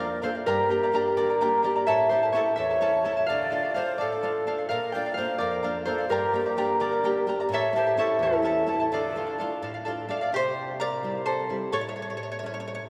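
Rocking along in a straight 6/8 at 85 dotted-quarter beats per minute, this wistful, melancholic Andean folk piece sits in D harmonic minor, cut from a longer work. A concert harp carries the melody with ringing, fingerpicked tones, while a breathy large quena traces a second line, its wooden, end-blown voice marked by vibrato, a crisp chiff on each attack and a close-miked presence. Beneath them, a bright charango with shimmering double strings sits up front in the accompaniment, and a classical nylon-string guitar adds warm fingerpicked support in the low register. The chords cycle through Gm, A, Dm and Bb before turning to C and A near the end. The quena stops at 9.6 seconds, and the charango takes a solo from 10.3 to 12.9 seconds, with the harp dropping out at 10.8 seconds and the guitar continuing beneath. A cathedral reverb with a long 5.3-second decay surrounds the ensemble, giving it the spacious sound of a church or concert hall.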